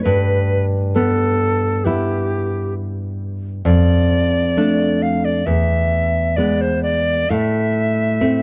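A pure alto recorder opens this elegiac romantic duo, its crisp, chiffy attack and vibrato carrying a melancholic melody. At 0.1 seconds a full-bodied, fingerpicked nylon-string guitar enters beneath it and sits slightly louder. The piece moves at a rubato 66 BPM in 4/4 from Em/G through Dm/F and E, reaching Am at 7.3 seconds, and the dry, close 1970s-style studio sound places both instruments up front.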